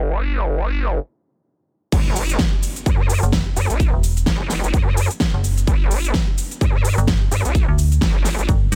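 A nasal, resonant wobble bass opens this bouncy, swaggering bass house cut, its vowel-like formant filter sweeping under a low-pass filter, with chorus, overdrive and sidechain pumping on the bass. The music stops briefly at 1.0 seconds, then the drop lands at 1.9 seconds as a punchy, layered electronic kick and a big-room dance kit arrive together, the kit bringing a huge snare, crisp hi-hats, shaker and crash cymbal with a tape-warm finish. A very quiet electronic impact sits beneath the opening of the drop. At 3.2 seconds a metallic FM bass joins, digital and decaying yet mellow, thickened by tube saturation and also carrying sidechain pumping. The swung sixteenths give the groove a loping bounce, and the close, nearly reverb-free mix keeps both basses up front.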